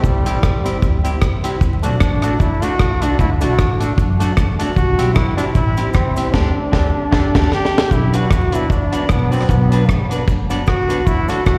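Ska at 152 BPM with a bouncy, cheerful swing, heard as a short cut from a live gig through the venue's PA with recital hall reverb and vinyl crackle, where a brilliant, punchy solo trombone carries the melody with vibrato, analog delay and slapback echo over a woody, thumpy pizzicato upright bass and a dry, dark reggae kit with a high-tuned snare and tight kick up front. A clean hollow-body electric guitar with spring reverb and slapback enters at 0.3 s alongside lightly overdriven tonewheel organ stabs sitting in the background, while a grainy cabasa ticks very quietly. The band hits an accent from 6.3 s, capped by a drum fill leading into a new section at 7.9 s as the harmony moves from C and D to B minor.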